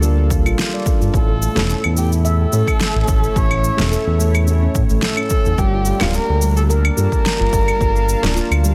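A dense, heavily limited mix with light small-room reverb carries this meditative, warm slice of organic downtempo, where a smooth, up-front synth bass and a detuned, chorused pad pump against an overdriven punchy electronic kick and a fat-snared electronic kit of shaker, claves and snare, while a ringing nitrided-steel handpan spills delayed arpeggios beside a thick-felt upright piano that pumps and echoes in the background; from 1.1 s a dark, nasal, woody kamancheh bows a delayed melody with vibrato and portamento, and a very quiet, hard-handed frame drum joins at 1.6 s.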